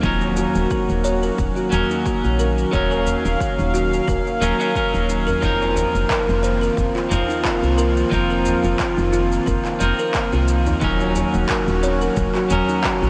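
Soaked in a huge ambient reverb with a 7.5-second tail, this dreamy, hypnotic slice of organic downtempo drifts at 89 BPM in 4/4 with a lightly swung sixteenth feel, moving through Ebm7 and F7sus4 before returning to Ebm7 at 10.8 seconds. A smooth, chorused sawtooth pad holds slow-blooming chords while a clean picked electric guitar with delay and a round, dark, woody FM bass sitting up front both breathe with sidechain pumping, and a buzzing, thumb-plucked kalimba spins delayed arpeggios coated in 12-bit sampler grit. Underneath, a punchy overdriven electronic kick and layered overdriven shaker and handclaps drive the groove, joined from 0.2 seconds by a very quiet, high-tuned, ringing tabla that stays close and dry, lending the piece a mystical air.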